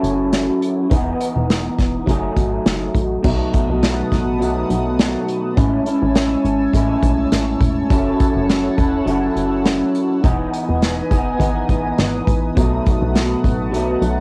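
A twangy, slightly broken-up electric guitar through a small old amp carries the accompaniment in this hazy, wistful indie and bedroom pop snippet at 103 BPM, its fingered chords colored by ensemble chorus and a warbly pitch drift over a lightly swung 4/4 groove. A punchy, mellow analog bass with a fast plucked attack sits low beneath an up-front unplugged drum kit played with bundle sticks, its dark cymbals, medium-tuned snare and punchy kick carrying a cassette tape tint. From 3.7 s a swirling, detuned vintage pad with phaser and chorus drifts in softly above, sustaining through changes like F#m7, Emaj7 and B7 in a cozy home cassette recording with a moderate studio reverb.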